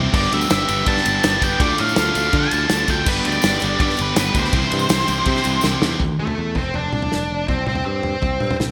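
A straight 4/4 pulse at 164 BPM drives this jangly, wistful indie rock cut in C major: a loose small-room drum kit with a tight kick and gated reverb plays alongside a punchy, bright picked bass, a biting overdriven guitar riff and a thick fuzz guitar soaked in lush chorus and digital delay in the background, while a dark octave-fuzz lead guitar carries the melody up front over chords moving through Gadd9, Dm, G and C. A very quiet jingly tambourine adds sparkle until it and both riff guitars stop at 6.0 s after a drum fill, leaving a sparer Dsus2, F5 and C5 passage glossed by bright 1980s-style hall reverb.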